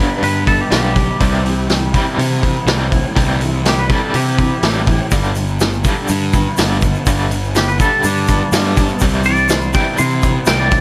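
Set in a small, close-sounding room, this wistful yet upbeat indie rock clip moves at 123 BPM in G major, swaying between G and C6, with a saturated, gritty vintage drum kit and a fuzzy overdriven picked bass sitting up front from 0.2 seconds. A clean, twangy, compressed electric guitar carries the solo melody, bathed in spring reverb and tape echo, while a bright, crunchy overdriven guitar with tremolo and a lo-fi garage guitar, treated with overdrive and ensemble chorus and tucked in the background, play riffs beneath it. A grainy tube shaker joins quietly at 5.1 seconds.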